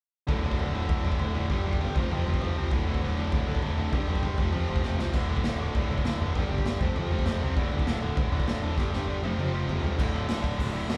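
A raw, live-in-one-room sound with light reverb frames this energetic, rebellious punk rock excerpt at 198 BPM in a straight 4/4, cut from a longer piece. It cycles through D5, G5 and F5 power chords. Two bright, picked electric guitars drive the riff, one distorted, compressed and scooped, the other overdriven, over a growly, fuzzed picked bass sitting in the background. A gritty, up-front garage drum kit with dark cymbals, a boomy kick and a pumping small-room sound throws in fills at 4.8 and 8.8 seconds.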